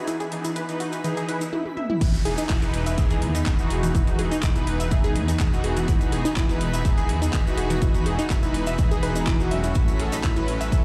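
Expansive and euphoric, this progressive house excerpt builds over a quiet riser and downlifter and a drum fill into a drop at 2.0 s, where a punchy, up-front electronic kick joins the metallic hats, handclaps, toms and crash of a pop drum kit, a grainy cabasa, a deep rumbling detuned saw bass, lush filtered unison pluck arpeggios and airy supersaw stabs with dub echo, all three sidechain-pumped, while a biting symphonic string section sustains chords in the background and a faint twinkling granular texture sparkles overhead in a large, reverberant room.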